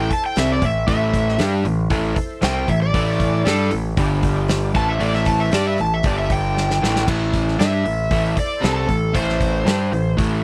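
Blues rock power trio and southern rock in A minor at 116 BPM, heavy and brooding, where an overdriven slide guitar with slapback echo takes a bright solo high over a dark, double-tracked semi-hollow guitar riff, growling overdriven picked bass and a big rock drum kit with a punchy kick, until a drum fill at 6.6 seconds leads into a new section at 7.1 seconds, all shaded by a very quiet, gritty tonewheel organ holding sustained chords through a slow rotary speaker in this dry, close 1970s-style studio excerpt.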